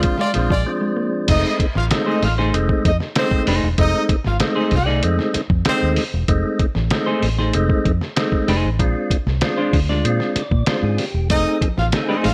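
A light reverb colours this short funk excerpt, with the drums, bass, hollow-body guitar and organ all up front. At 96 BPM in a straight 4/4, the mood is playful and strutting, moving between Bb9 and F7#9 chords. A raspy, growling tenor saxophone states a brief melodic phrase that ends at 0.7 s, just as a break arrives. Underneath, a compressed, pitched-down sampler-style drum kit with a thumpy kick and fat snare drives the groove, joined by a round, foam-muted fingered bass. A dark, clean semi-hollow guitar supplies the accompaniment, and a mellow, lightly overdriven tonewheel organ punches out stabs through chorus vibrato and a fast rotary speaker, taking a fill at 10.0 s. A warm horn section with vibrato plays a second line, while a mellow, compressed electric guitar riff sits in the background.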